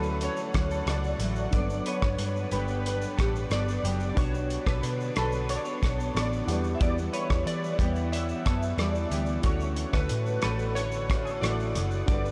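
A cloth-damped, thuddy drum kit with a tight kick, rim click, hi-hat and shaker sets a straight 4/4 at 91 BPM, its gritty 12-bit sampler texture sitting up front beside a round, foam-muted vintage electric bass in this hazy, dreamy bedroom-pop excerpt in D major that moves from Dmaj7 through Gmaj7, Bmadd9 and Emadd9. Glossy, detuned retro synth keys carry the melody through tremolo, ensemble chorus and delay, while a clean, compressed electric guitar traces a quieter second line until 11.6 s. Beneath them sit a bright fingerpicked nylon-string guitar with lush chorus and warbly pitch drift, a worn, slightly out-of-tune tine electric piano and a thick, slow-attack unison pad, the whole mix soaked in a huge ambient reverb.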